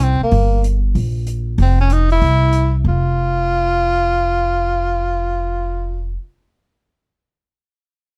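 This short excerpt of small-group swing and bop jazz, cut from a longer piece, has a moody, swinging feel in a dark, warm production with little reverb. A bright tenor saxophone carries the melody up front, its solo line colored by vibrato and scooped notes in a jazz style. Beneath it, a woody upright bass played pizzicato on steel strings sits close and present, holding down the low end. An open acoustic drum kit, heard only until 2.6 seconds, adds smooth hi-hat and a punchy kick from a small room, set lower than the other parts. The harmony moves through Gm, Dbmaj9/F and C, with chordless passages at 1.0 and 2.9 seconds, and a second section begins at 2.9 seconds before saxophone and bass fall away around 6 seconds.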